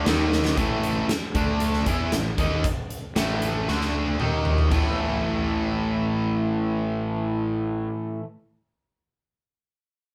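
Opening with a drum fill beneath guitar and bass, this heavy, menacing hard rock fragment sets a bright, double-tracked overdriven guitar riff over a growly, fuzz-soaked fingered bass, with a big rock kit up front, punchy kick, medium-tuned snare and bright china and crash cymbals ringing out. The band sounds like it is playing live in one room under light reverb, moving from D#5 to A5 and D5 power chords, and a second drum fill from 3.7 to 4.7 seconds leads into the next section. The drums stop at 4.8 seconds, as guitar and bass grind on until the bass drops out at 7.9 seconds and the guitar at 8.2.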